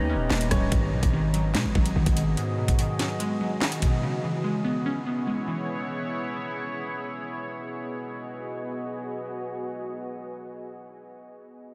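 Dark, ominous half-time drill hip hop, cut from a longer piece, opens with a brief clear, woody upright piano melody and a very quiet hollow clarinet-like synth lead over a glassy, detuned wavetable pluck, a deep, evolving ambient pad that sustains to 11.0 s, and a growling 808-style bass, while an up-front drill kit of knocking kick, sharp snare, handclaps, rim clicks and metallic hats plays from 0.3 s to 3.9 s, all drenched in a huge, dreamy reverb.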